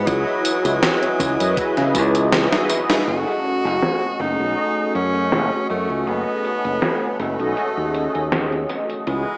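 A clear, up-front tenor saxophone with tape echo carries the melody from the start over mellow, chorused synth brass, a faint, warbling tape-like pad and a bright, growly fingered bass, while a thumpy, sampler-style electronic kick drum sounds only until 2.1 s and a gritty gated 80s digital drum machine with crash, hi-hat, snare and tambourine plays a fill into a band accent before a filter sweep on its drums from 3.1 s, shaping a woozy, melancholic vaporwave excerpt with a lightly swung feel, an echo-heavy mix and a small-speaker sound.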